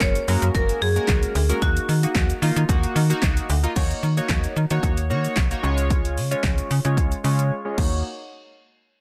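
A bright marimba struck with hard mallets opens this confident, energetic dance-pop cut from a longer piece, carrying a short percussive melody with digital delay. Beneath it a glossy, retro polysynth plays chorused chords over a snappy FM bass with a metallic attack, both pumping against the sidechain at 112 BPM in a straight 4/4 feel in Eb minor. The punchy pop drum kit sits up front with a fat snare, metallic hats, handclaps, shaker and crash, its layered electronic sound overdriven. The marimba drops out at 3.2 seconds, and from 3.8 seconds the polysynth moves through a filter sweep as the harmony shifts from Gbadd9 and Ebm toward Ebm7 and Db. A brief break arrives at 7.5 seconds, closing out a dense, heavily limited modern mix with light reverb.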